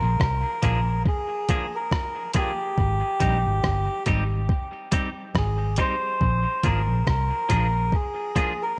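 Roots reggae with a sunny, warm mood, this short excerpt moves at a relaxed, gently swung pace. A reedy, breathy melodica carries the melody from the very start, its mellow tone sitting up front and trailed by tape echo. Beneath it, a dark, round electric bass with a foam-muted, punchy sound anchors the low end until about 7.9 seconds. A gritty, sampler-style drum kit of hi-hat, thumpy kick and rim click enters at 0.2 seconds, compressed and overdriven with its own tape echo. A clean, hollow-bodied semi-hollow guitar adds soft accompaniment from 0.6 seconds, touched with subtle chorus and echo, while the harmony moves from Bb7 to Abmaj7 and back, all set in a light reverb.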